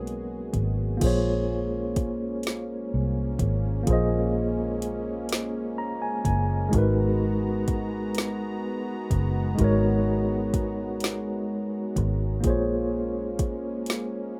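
A mellow, clean tine electric piano takes a brief solo in the first second as this sultry, late-night slow six-eight R&B groove at 42 BPM in Bb phrygian settles in, with a dark, round, foam-muted fingered bass, a soft-kicked electronic drum kit with woody snare and metallic hats, and a smooth, detuned sawtooth pad with chorus sitting quietly beneath, all shifting between Abm9 and Bbm9 while the electric piano adds a fill at 5.3 seconds in a rough home-demo mix with light reverb.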